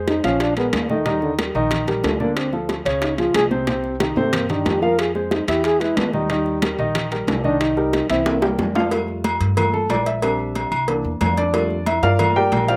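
Dry, close-sounding and recorded outdoors, this lively, sunny Afro-Cuban jazz excerpt at 183 BPM opens with a breathy trombone soloing with light vibrato and slapback echo over a mellow, up-front dark baby grand piano, woody pizzicato upright bass, tight bongos and cowbell, bright congas in the background, and ringing timbales and agogo bells, until a drum fill at 8.3 seconds hands over to a piano solo in F major from 8.9 seconds.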